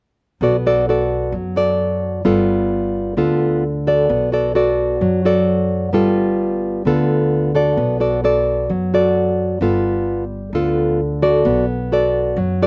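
A straight 4/4 bossa nova groove carries this romantic, breezy fragment of a longer piece: a fingerpicked classical nylon-string guitar with fresh strings and a touch of slapback echo sits up front, moving between Bm7 and G9 from 0.4 to 12.7 seconds, while a dark, woody pizzicato upright bass on steel strings sits much lower in the mix, all captured dry in the open air.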